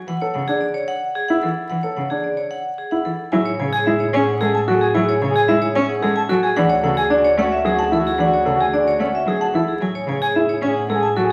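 A bright, propulsive minimalist classical pattern piece moving at 111 BPM in a straight 3/4 in D lydian, where an up-front, metallic vibraphone with hard mallets rings out the melody over a rich, bowed solo cello and short-sustained baby grand piano arpeggios, joined at 3.3 seconds by a dark, vintage-toned soprano saxophone second line and a smooth bowed double bass section, with a distant, airy flute adding arpeggios from 3.7 seconds, all set in a wet recital hall reverb with vinyl crackle as Dmaj9 and Amaj7 alternate through this cut from a longer piece.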